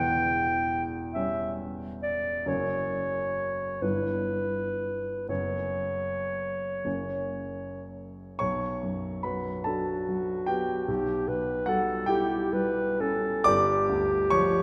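Elegiac and solemn, this romantic classical duo in B minor moves in a slow, rubato 6/8 at around 37-50 BPM, with the mellow clarinet singing the melody up front over a warm grand piano accompaniment that reaches from deep bass to high treble, both bathed in the long, wet reverb of a concert hall, and with the harmony settling on Bm at 8.4 seconds as a new section begins in this short passage cut from a longer piece.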